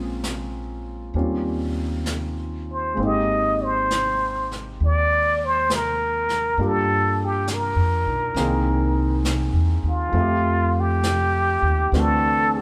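A slow swung 4/4 at 67 BPM sets a late-night, tender jazz ballad, with the warm concert grand piano and woody, growly pizzicato upright bass opening together while the brushed drum kit slips in at 0.2 seconds on snare and hi-hat. At 2.7 seconds a plunger-muted trumpet takes the melody up front, breathy and wah-wah inflected with vibrato and a soft attack, as the intimate piano, its action noise audible, moves through rich chords from Bbm9 to Abmaj9 and on toward Fmaj9. The band sounds like it is playing live together in a stone room with a moderate reverb, and this cut from a longer piece runs 12.6 seconds.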